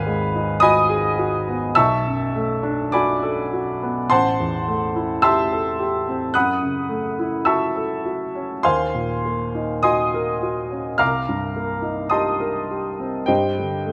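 A warm baby grand piano opens alone at 0.0 seconds, sounding open and up front with a long sustain that lets each chord ring. This is a dreamy, serene classical passage in an impressionist vein, played with rubato at a slow 52 BPM in 4/4. The harmony drifts through a chain of minor seventh chords, from Abm7 through Bm7, Am7, Gbm7, Ebm7 and Cm7, before settling on a bare G5 at 13.3 seconds. The piano spans a broad register, reaching from Ab1 in the deep bass up to Gb6. Close, detailed microphones capture the instrument intimately, while a moderate recital hall reverb adds a soft halo around it. The recording is cut from a longer piece and runs to 13.9 seconds.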